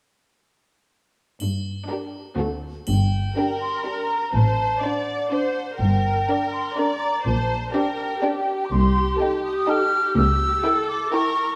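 A moderate scoring-stage reverb gives this excerpt from a playful, whimsical film cue a roomy glow, its mood sneaky and magical in G minor at 124 BPM in a straight 3/4. Bowed cellos with vibrato set the bass at 1.4 s alongside a bright triangle, then a smooth violin melody sits in the background over a dark, woody second violin line and clear, focused violas. From 2.9 s an airy, tongued flute group carries an expressive second line up high while double basses add a distant, even low end, the harmony moving from Gm and D7 toward a closing C#dim7.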